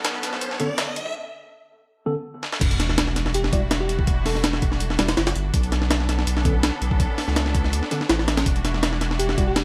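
A riser and sub drop open this excerpt of frenetic, atmospheric drum and bass in the jungle vein, sounding over sustained chords from a bright, biting symphonic string section and a deep, thick sine sub bass with tube saturation, all in E minor at 164 BPM. The breakbeat drums, sampler-style, compressed and pitched up, sit up front with a thumpy kick, a high-tuned snare, hi-hat and crash cymbal, carrying a gritty, tape-warm character and studio reverb. From 0.6 s a mellow, clean tine electric piano plays stabs through phaser and dub echo, with a filter sweep on it during the build-up, and a break leads to a drum fill at 2.4 s before the drop lands at 2.6 s with an impact. The chords move between Bm9 and Em9, and a sparkling, warbling FM electric piano adds brief bell-like melody fragments in the background, treated with chorus, phaser and dub echo. Light reverb and a digital ambience surround the whole mix.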